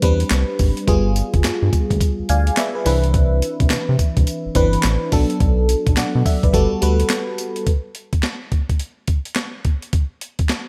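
A glassy, bell-like FM electric piano with chorus and phaser opens this slick, bouncy new jack swing excerpt over a round, deep analog bass and a gritty, compressed breakbeat kit with a thumpy kick, snare, hi-hat, handclaps and tambourine, the piano adding a fill at 2.0 seconds across a rootless Am11 followed by G7b9, Cmaj9, Bm7 and Gmaj9 chords before the drums carry on alone from 7.7 seconds in light digital ambience.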